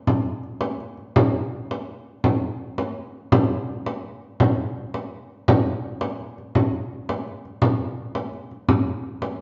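The recording carries a dark, rolled-off top end, with a large studio reverb lending a wet, roomy halo, as if the players were captured live together in one space. This is a short cut from a longer medieval piece in 6/8 with a straight feel, and its mood is ancient and mysterious. A lone frame drum carries it from 0.1 s to 9.4 s, small and bright in tone, struck with soft hands and placed close, dry and up front. At 5.5 s the music moves into a new section, and the pulse gradually speeds up from start to finish.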